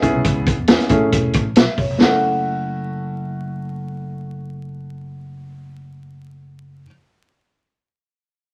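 Uptempo 1960s-style soul in F# minor at 136 BPM, this short, urgent and driving fragment from a longer piece opens on C#m7 and Amaj7 before settling on F#m7 at 2.0 seconds. A vintage acoustic drum kit with a punchy kick, medium-tuned snare and hi-hat sits up front but drops out at 2.1 seconds. A dark, mellow baby grand piano with audible action noise and short sustain carries on to about 6.9 seconds, supported by a warm, amped, punchy fingered electric bass until about 6.8 seconds, all in a small, natural-sounding room with vinyl crackle.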